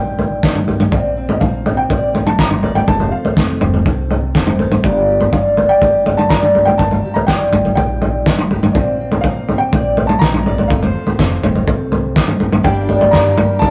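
A worn, slightly detuned upright piano opens this short cut from a longer indie folk piece in G minor, carrying a yearning, bittersweet melody over a dark fingerpicked steel-string acoustic guitar and a woody pizzicato upright bass sitting in the background. At 0.2 seconds a cloth-damped, thuddy drum kit joins up front, its tight kick, fat snare and toms sounding muffled, gritty and saturated, like a small room with its top end rolled off. The arrangement builds at a steady, straight 123 BPM in 4/4, tuned slightly sharp to A4 = 441 Hz, moving through Eb, Bbadd9, F and Gm before landing back on Gm as a new section begins at 12.7 seconds. Just before that, at 12.6 seconds, a boxy, ladder-braced twelve-string acoustic guitar with old strings adds a shimmering, octave-doubled layer. Moderate studio reverb gently surrounds a rough rehearsal-room sound whose highs are dulled.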